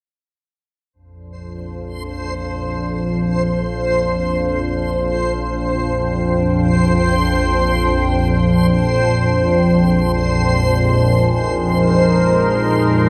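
In free time, this desolate, unsettling dark ambient drone excerpt opens with a calm, organ-like drone, detuned and up front, entering low at 1.4 seconds, joined at 2.0 seconds by a reversed, swelling texture that sits bright and dreamy with granular shimmer reverb. From 3.3 seconds a deep, moody pad of mellow sawtooth and sub-octave tones fades in with evolving sustained chords, moving from F5 to Ab. The whole piece sits in a huge, wet reverb that stretches every long release into a dark haze.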